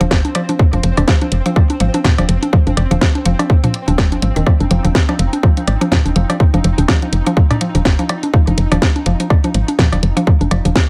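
Hypnotic and clinical, this minimal techno excerpt runs at 124 BPM with a swung sixteenth feel, built on a tight, up-front electronic kick, a garage kit with cracking snare and bright hats, tape-warm electronic congas, cowbell and toms with tape echo, a soft, round FM bass pumping under the sidechain, a woody mallet-like synth pluck riff with chorus and digital delay, and a detuned, pulsing gated texture with chorus and built-in reverb sitting in the background, all in a dry room over an F5 chord.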